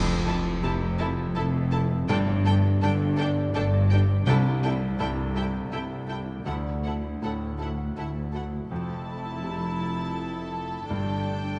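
A rubato 3/4 at 82 BPM carries this hopeful, uplifting cinematic piece, where a floating, rich violin section melody, a smooth-topped, intimate second violin line and pure sul tasto violas enter at 0.3 s over a dark cello section and close, warm double basses, with a brilliant grand piano and ringing, mellow concert harp arpeggios in the background, very quiet calf-head timpani at 2.1 s and again at 10.9 s, and a wet scoring-stage reverb over chords moving from Fmaj7 through Gsus2, C6 and Dadd9.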